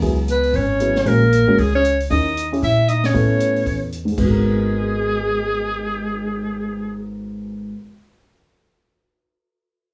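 Small-group swing-and-bop jazz at a brisk 231 BPM in G# minor carries a late-night, swinging mood, with a bright, forceful clarinet with vibrato leading the melody from 0.3 seconds while a breathy, whispered tenor saxophone in subtone plays a second line, over a mellow upright piano with audible action noise, a woody pizzicato upright bass sitting up front, and an open acoustic drum kit with dark cymbals, a high-tuned snare and boomy kick that drops out at 6.2 seconds, all set in a small club-like room.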